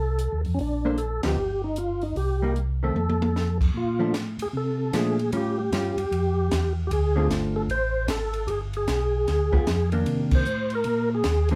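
Soulful and bluesy, this short excerpt of a swinging soul jazz organ trio in Bb major at 152 BPM sets a clear, percussive tonewheel organ melody with key click over a round, dark organ bass, both turning through a slow rotary speaker with chorus vibrato, while a compact cocktail drum kit with a punchy kick, high-tuned snare and dark cymbals enters at 0.2 seconds and a clean, compressed hollow-body jazz guitar joins at 0.8 seconds, the band hitting accents at 1.2 and 10.3 seconds and the drums adding a fill at 3.0 seconds, all heard from further back in a club room.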